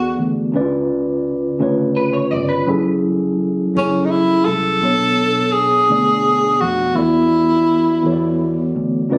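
A brief breathy tenor saxophone note opens this late-night slow six-eight R&B fragment, heard over a mellow tine electric piano and a dark, round, foam-muted fingered electric bass that carry the whole passage. The piano sits clean and up front, moving through rich extended chords from E9sus4 to C#7b9, F#m9 and Bm9 before returning to E9sus4. At 2.0 seconds a slightly broken-up picked electric guitar adds a short second line, compressed and touched with ensemble chorus. The saxophone returns at 3.8 seconds for a yearning solo phrase in a jazz style, clear and vibrato-laden with scooped notes and a slapback echo. Light reverb, compression and a phone-captured room quality shape the sound, and the piece is cut from a longer work.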